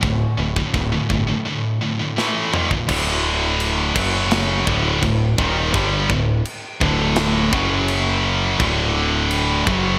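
A heavy, epic heavy metal excerpt at 84 BPM in D major opens with an up-front high-gain guitar riff, a second distorted guitar tucked behind it, a growling overdriven picked bass and a tight drum kit with bright china and crash cymbals and gated reverb, whose fill at 2.2 seconds leads into a section where a thick, double-tracked fuzz guitar joins at 2.9 seconds over power chords moving between D5 and F#5, all set in a bright 1980s-style digital production with light reverb.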